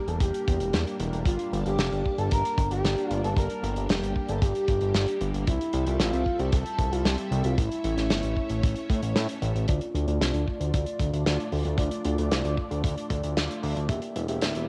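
A hazy cassette home recording with light studio reverb carries this moody, nostalgic synthwave fragment in D minor at 114 BPM, where a fat, detuned analog bass with tube saturation and a tight, up-front kick anchor a mid-forward soul drum kit of snare and filtered hi-hat. A lush string machine pumps and phases beneath a smooth, expressive portamento lead whose mellow sawtooth melody, bathed in chorus and tape echo, sings until 9.1 seconds. At 9.7 seconds a dreamy FM electric piano with a soft pad layer slips in from the background with tremolo, analog delay and a filter sweep over the turn to Dm.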